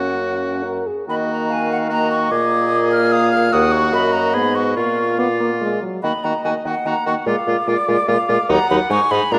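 Urgent and restless, this quick classical-period movement for wind quintet in 3/4 has a rubato feel and is cut from a longer piece. A hollow, airy flute with vibrato and a crisp attack carries the melody high above a clear oboe second line, while a smooth-topped French horn and a present clarinet fill in the accompaniment and a warm, up-front bassoon anchors the bass with light vibrato. All five instruments play throughout the 9.4 seconds in a dark production with moderate scoring-stage reverb, and a new section begins at 1.1 s.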